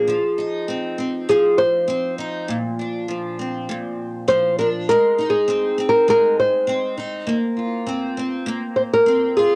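A small-bodied, fingerpicked nylon-string guitar carries the melody up front in this carefree pop fragment, its finger squeaks and cassette-tape color giving it an intimate, homespun charm. Beneath it, a double-tracked steel-string acoustic guitar with a concert-sized body supplies picked accompaniment over a lightly swung feel, moving through Fm7, Bbadd9, Ab and Bbsus2. Both guitars play from start to finish of this 9.6-second cut from a longer piece, framed by light reverb and the easy-going intimacy of a home cassette recording.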